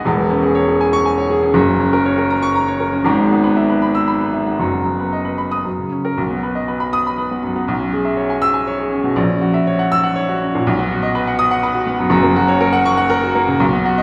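A warm baby grand piano, open and up front with long sustain, plays solo through this heroic, brilliant classical virtuoso study in a rubato triple metre, spanning E1 to E6 and moving into a new section at 6.2 s, set in the wet reverb of a recital hall in a passage cut from a longer piece.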